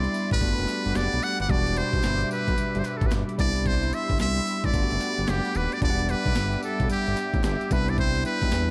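A muted trumpet sits up front with a buzzy, breathy tone, playing a jazz-style solo line with light vibrato and scooped notes over a slick, bouncy new jack swing groove in this short cut from a longer R&B piece. A bell-like tine electric piano adds clean, bright accompaniment, a mellow chorused pad hums in the background, and a fat, detuned analog bass drives the low end through a Gmaj7, Em7 and Cmaj7 progression. A gritty, compressed breakbeat-style kit with a thumpy kick, snare, hi-hat and tambourine carries the swung rhythm, joined at 0.7 seconds by a very quiet, crisp group handclap, all in a dark production with light digital reverb.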